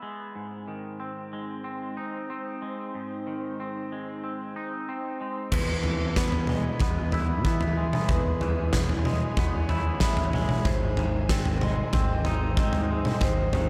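A huge arena drum kit sits up front once it arrives at 5.5 seconds, with a fat snare, punchy kick, bright cymbals, toms and crash, all caught in a pumping hall sound. This cinematic, cathartic post-rock fragment of a longer piece opens on a clean, twangy electric guitar picking arpeggios through lush chorus and delay. Half a second in, an evolving wavetable pad joins in the background, its detuned, morphing chords drifting in with a slow attack and long release. The drums enter alongside a growling, overdriven fingered bass that is punchy and direct. A metallic vibraphone adds ringing arpeggios with delay, played with medium hard mallets and tucked behind the band. The whole mix is dreamy and soaked in plate reverb as the chords move from G# to E and back to G#.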